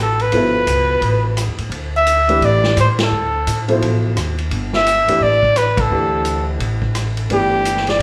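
A trumpet with light vibrato carries the melody up front from the opening beat over thumpy, woody pizzicato upright bass on gut strings, in a spiritual, intense modal jazz excerpt in D dorian at 172 BPM with a swung 4/4 feel over a Dsus4 chord. A vintage drum kit with dark cymbals, a punchy kick and a medium-tuned snare joins at 0.2 s, and a natural-sounding baby grand piano adds accompaniment just after. The band plays live together in one room, bathed in a large studio reverb, and hits accents at 2.9 and 5.7 seconds.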